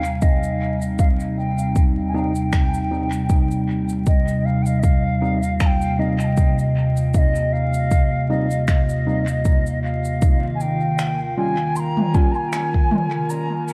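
A deep, tape-warm electronic kick sits up front in this hazy, peaceful ambient dub fragment, pulsing from 0.2 to 12.9 seconds at 78 BPM in 4/4 with lightly swung sixteenths. Around it, an organic electronic kit of cabasa, finger snaps and toms is overdriven, re-recorded in a small room and soaked in dub echo. A warbling, nostalgic pad, lo-fi and dark with detuned square and triangle tones, chorus and its own reverb, holds long chords from Cm/Eb before settling on Ebadd9. From 2.1 seconds a barky, gritty tine electric piano, overdriven through a combo amp, drops echoed stabs in the background. Above it all, a distant wooden flute plays a pure, mellow, tongued melody with vibrato, trailing dub echo, while vinyl crackle and an echo chamber reverb give the echo-heavy mix its dusty haze.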